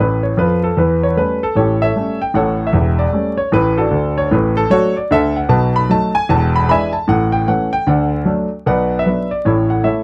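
A clear, worn concert grand piano plays solo and up front through this playful, exuberant stride jazz passage cut from a longer piece, its swung eighths moving through A7, D, B7 and E7 with a deep bass and short sustain, set in a dry, close 1970s-style studio sound with light reverb and vinyl crackle.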